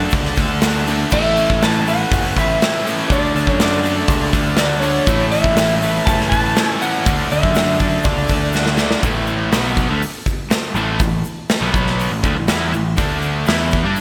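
Classic rock with a driving, confident feel, this excerpt rides on overdriven riffing guitars set in the background: a cranked stack guitar, a double-tracked electric guitar and a hollow-body semi-hollow, the latter two carrying slapback echo. Beneath them sit a growling, amped picked bass and a big rock drum kit with a punchy kick and bright cymbals up front, plus a grainy, very quiet egg shaker. A warm, slightly broken-up slide guitar sings the melody until 8.7 seconds, and a drum fill at 8.5 seconds leads into a power-chord section from 9.0 seconds, all bathed in a lush hall reverb for a big arena sound.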